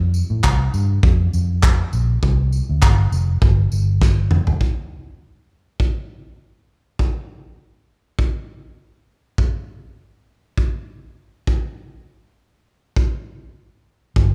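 A loose indie drum kit, up front with a punchy kick, fat snare, handclaps, tambourine, toms and a rolled-off top in a pumping studio room, carries this tender, reflective acoustic pop passage at 100 BPM with a gentle sixteenth-note swing. A dark, round, foam-muted vintage electric bass opens the passage just ahead of the kit's entry at 0.1 seconds, then drops out at 4.6 seconds after a drum fill from 4.0 seconds, leaving the kit alone under light reverb until the bass briefly returns at 14.2 seconds.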